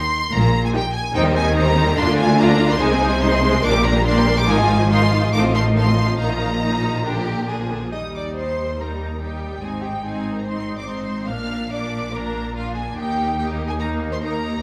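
A distant, lush violin section carries the melody from the first moment of this spirited, graceful excerpt of a quick classical-period string orchestra movement in Eb major at 143 BPM with a rubato feel; at 0.3 s a close, focused double bass section and a smooth, even cello section join on the bass, and at 0.7 s a rich second violin line and an intense viola accompaniment enter, all bowed with vibrato in a moderate scoring-stage reverb, while the harmony settles into plain Eb, Ab and Bb chords from 7.9 s.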